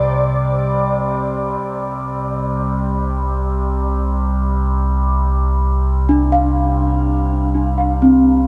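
Soaked in a huge, dreamy reverb, this melancholic and serene ambient fragment opens with a breathy, flute-like synth lead that stops at 1.1 seconds, over a round sub bass and a nasal, overtone-sweeping drone, as the harmony moves from Csus2 to Fsus2/C before a delicate, bell-like celesta enters up front with lushly chorused, echoing arpeggios at 6.1 seconds.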